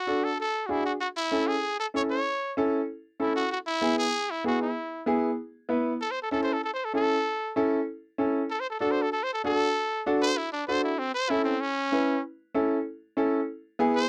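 A raspy, growling trumpet carries the melody up front in this joyful, festive Latin excerpt at 192 BPM in A major, with a clear, woody upright piano accompanying throughout and the trumpet taking a solo from 6.0 seconds, all captured in a dry, close 1970s-style studio sound.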